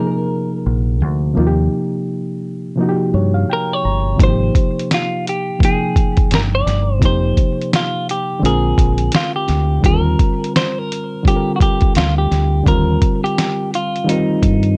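Compressed, muffled sampler-style drums with a thumpy kick and a gritty 12-bit character arrive at 4.2 seconds, sitting up front in this dreamy, nostalgic lo-fi hip hop excerpt in Eb major at 85 BPM with a swung 16th-note feel. A reedy, worn, slightly out-of-tune electric piano carries the chords through a cassette-tape haze, while a dark, round fingered bass enters at 0.7 seconds and anchors the low end. Above them a clean, hollow-body electric guitar plays a filtered melody bathed in plate reverb, drifting over changes from Cm7 through Ab6 and Bb9 to Ebmaj7.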